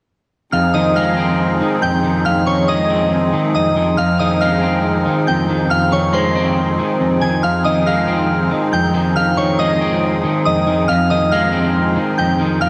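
Hip hop at 139 BPM in a half-time feel, this cold, dark piece in F minor rests on a single Fm7 chord and is cut from a longer work. A glassy, crystalline FM synth bell carries the melody up front with fast-attack, decaying notes, treated with chorus, a low-pass filter and diffuse ambient delay, while a picked electric guitar at the edge of break-up plays accompaniment through ensemble chorus and filtering. A reedy musette accordion holds shimmering sustained chords underneath, and a wet plate reverb soaks the whole mix in a dreamy haze.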